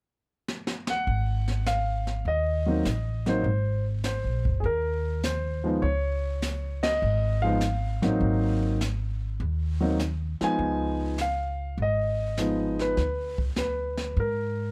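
Warm and relaxed, this excerpt from a longer jazz piano trio piece swings easily at 101 BPM in Ab mixolydian, as a brushed drum kit with dark cymbals and a boomy kick opens with a fill at 0.5 seconds before an up-front grand piano carries the melody and a woody, pizzicato upright bass with steel strings enters at 1.1 seconds, moving through chords like Ab7, Dbadd9 and Db9 with a band accent at 6.7 seconds, all captured by close, detailed microphones with little reverb.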